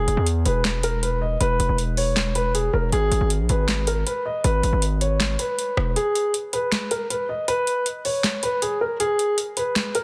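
Trap-style hip hop in G# minor at 158 BPM with a half-time feel, this brooding, melancholic excerpt sets a dark, mellow baby grand piano melody, softened by a low-pass filter and trailed by digital delay, over chords moving from E5 to G#m. A distorted, saturated 808-style bass with a noisy edge hits hard beneath it until 6.0 seconds. An overdriven analog drum machine with crisp snare, metallic hats, handclaps and rim clicks carries on through the end, its kick muted after that point, all within light digital ambience and a dense, heavily limited master.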